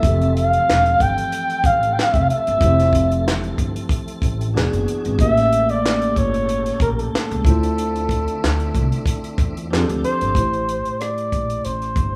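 A breathy, mellow flugelhorn solo with scooped notes, vibrato and slapback echo carries the melody up front in this smooth, sensual neo-soul R&B cut in F major at 93 BPM, over a clean tine electric piano with phaser, a background tonewheel organ with fast rotary speaker and key click that drops out at 10.3 seconds, a woody pizzicato upright bass, and a dry, punchy compact cocktail kit with high-tuned snare, rim click and handclaps, all caught in the small-room ambience of a rough home demo.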